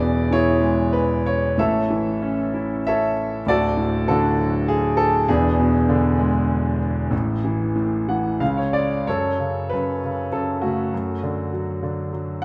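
A clear, intimate concert grand sits up front in a moderate hall reverb, its audible action noise, boxy body and deep bass ringing out with long sustain. This lyrical classical solo piano passage, cut from a longer piece, moves in a rubato 3/4 at around 90-101 BPM, bittersweet and moody as it travels through E, A, D and E7 in A major. After a brief fill at 7.8 seconds, the music turns toward F# minor at 9.1 seconds, settling on F#m and D/F# before breaking off at 12.4 seconds.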